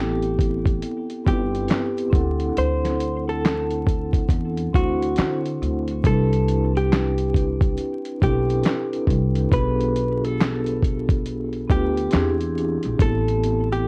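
A dusty, sampler-style drum kit sits up front in this dreamy, nostalgic lo-fi hip hop excerpt, its thumpy kick, medium-tuned snare, hi-hat and handclaps sounding gritty and compressed from 0.2 seconds, swung at a relaxed 69 BPM in C major. A woody pizzicato upright bass and a dark, ringing vibraphone with slow motor vibrato carry the harmony through Am9, D9, Cmaj9 and G9/B toward an E7alt, while a clean, picked hollow-body jazz guitar plays a muffled, low-passed melody. Light reverb, vinyl crackle and warbling cassette-tape pitch drift give the whole a worn, faded sheen.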